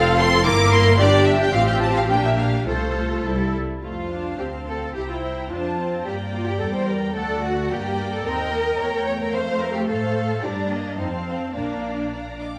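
Cheerful and graceful, this quick classical-period movement for string orchestra moves at 108 BPM in 2/4 with a rubato feel, starting in F major and shifting to Bb major at 8.2 s, as a warm violin section carries the melody in the background, a second, distant violin section adds a lush line above violas in rich accompaniment, and the cello and double bass sections sit up front with smooth, vibrato-laden bass, all framed by moderate recital hall reverb in a fragment cut from a longer piece.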